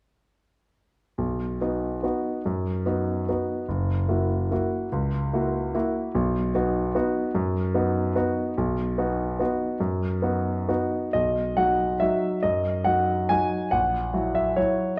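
A clear, natural grand piano plays alone and up front from 1.2 s, with short sustain, spanning F#1 to G#5 in a playful, graceful classical waltz in B major. Set in 3/4 with a rubato feel at 127-156 BPM, this cut from a longer piece moves between B and F#7 before a new section begins at 11.1 s and closes on F#7/A# at 13.7 s. Moderate recital hall reverb surrounds the playing, and the production is dark.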